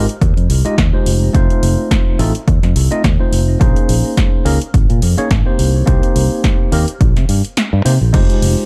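Nu-disco in F minor at 106 BPM with a light 16th-note swing, this short cut from a longer piece feels sensual and cosmic, its dark production moving through Fm9, F7, Bbm11 and Cm7. A growly, up-front fingered electric bass sits forward, while a clean tine electric piano accompanies through sidechain pumping and digital delay, heard as if through built-in speakers. A punchy, layered electronic kick and a house drum kit of crash, snare and tape-warm hi-hats carry studio reverb, with the kick dropping out from 7.6 to 8.1 seconds.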